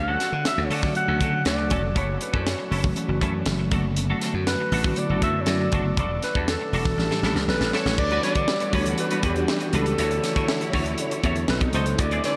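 A breathy alto saxophone with a soft attack and delay carries the melody over a growly, punchy slap bass from the first moment. A clean, compressed semi-hollow guitar riff with ensemble chorus, a tight funk kit with a high-tuned snare, and a mellow tine electric piano with lush chorus join this glossy, upbeat 1980s jazz-funk pop at 120 BPM. After a drum fill at 7.0 seconds, a rich bowed string section with vibrato enters in the background at 8.0 seconds, all bathed in a huge, dreamy ambient reverb in this excerpt from a longer piece.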